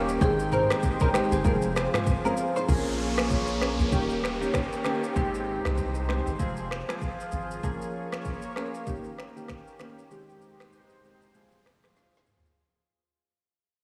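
Chorus-tinged analog keys with a round pulse-wave and sawtooth tone and a detuned, warbling vintage pad open this mellow, hypnotic afrobeats excerpt over a deep, punchy sine sub bass, joined by an up-front electronic drum kit with a woody snare, shaker, finger snaps and rim clicks, while a soft-malleted marimba melody sits in the background until 2.3 seconds and a bright, clean direct-recorded guitar riff with ensemble chorus and diffuse delay lingers there until 2.6 seconds; an electronic downlifter arrives at 2.7 seconds as the music begins to fade, the bass stops at 7.6 seconds, and a drum fill closes the dreamy, reverb-soaked mix.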